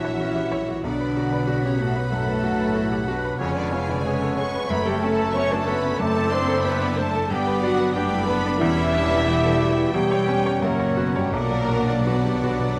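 A clear, naturally voiced grand piano carries the melody with short-sustained notes, reaching from deep in the bass up to D5, in this brooding, tragic excerpt from a romantic movement for piano and orchestra in B minor. The tempo moves freely between 80 and 96 BPM in 4/4, and the harmony travels from Bm through G and Em7 before a C#dim/E and F# lead back to Bm. A lush, vibrato-rich violin section shares the melody from a distant place, while a second, more focused violin section joins a very quiet, pure flute section, a soft-edged oboe and a solo clarinet on supporting lines. A mellow, roomy bassoon and very quiet, smooth violas fill the accompaniment, and the French horn section, the loudest voice in the orchestra, holds mellow sustained chords. Expressive cellos and double basses anchor the bass, and crisp, dry timpani strike with hard mallets at 4.7 seconds before a closing fill from 11.3 seconds. 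Close, detailed microphones capture the ensemble within a moderate scoring-stage reverb.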